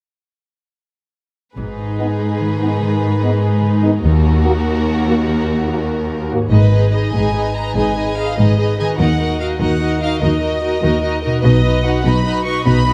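A swashbuckling, determined cinematic cue in G# minor, this passage from a longer piece moves at 98 BPM in 12/8. At 1.6 s the full string body enters together, with a focused chamber violin section carrying the melody up to C#6 over a lush symphonic violin section on a second line and a smooth, even viola section filling in the accompaniment. Cellos and a dark, woody double bass section anchor the low end, sitting noticeably forward in the balance, while a fingerpicked concert harp rings out arpeggios in the background. A French horn section adds sustained chords from 2.0 to 6.4 s, its light vibrato in a classical style. The harmony moves between G#m and D#m before settling on B, heard through moderate scoring stage reverb and close, detailed microphones.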